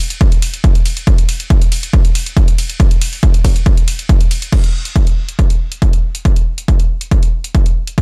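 A dry sound frames this short techno cut at 139 BPM in a straight 4/4, dark and hypnotic in mood. A punchy, tape-warm electronic kick drum sits up front, layered and set in a small room, and runs from 0.2 seconds to the end. Beneath it, an overdriven analog drum machine in a larger room supplies crash, hi-hat and ride cymbal from 0.1 seconds, with a drop over the opening 4.5 seconds before the second section takes over.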